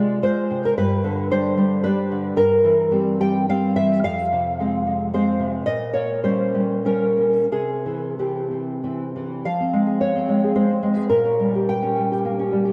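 A romantic solo classical guitar piece in a passionate, intimate mood, moving in a flexible, rubato three-beat pulse. The nylon-string guitar sits up front with a thumb-plucked, classical tone and audible finger squeak, colored by analog chorus and tape echo and soaked in a long plate reverb that gives the mix a dreamy haze. This excerpt from a longer piece shifts into a new section at 9.5 seconds and carries on until it is cut off at 12.7 seconds.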